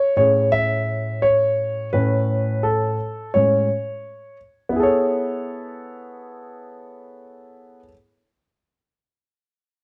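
Warm and smooth, this short hip hop fragment cut from a longer piece features a dark concert grand piano playing solo at 85 BPM in A major, with a swung 16th-note feel and an opening Amaj9 chord. The piano sits up front with a mellow tone and deep bass, ranging from A2 to E5, and a moderate stone room reverb gives it the sense of being captured live in one room. A new section begins at 4.8 seconds, and the piano carries on until 7.9 seconds.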